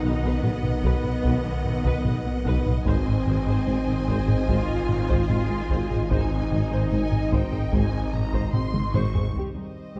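A dark, warm scoring-stage sound frames this ten-second cut from a vast, relentless hybrid orchestral and electronic film cue at 74 BPM, moving from B to Ab and landing on Cm at 9.4 seconds. Lush, expressive violins carry the melody over a close studio violin line, distant woody violas, rich cellos and double basses, while mellow horns, dark trombones and a warbly, lo-fi tape-like pad hold sustained chords. Beneath them a soft round pluck arpeggiates, while a background tuba, a deep analog bass riff and a snarling, growling distorted saw bass thicken the low end, and heavy-sticked taiko drums pound in the background, closing with a fill from 8.5 to 9.4 seconds.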